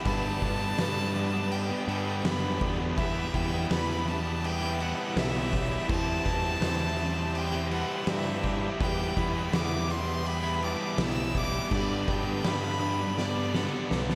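A big arena sound bathed in lush hall reverb frames this cinematic, melancholic post-rock passage in E minor at 82 BPM, cut from a longer piece and moving through G, Em and C/E. An airy, nasal solo violin carries the melody with light vibrato and slapback echo over a very quiet, dark string section sustaining chords with portamento, while an overdriven guitar and a thick fuzz guitar play a riff in the background and two very quiet guitars, one slightly broken-up through a small old amp and one twangy and clean, pick arpeggios. A growling, overdriven bass sits up front alongside an oversized, low-tuned drum kit with a boomy kick, fat snare and dark cymbals, which closes on a fill from 13.2 to 14.2 seconds.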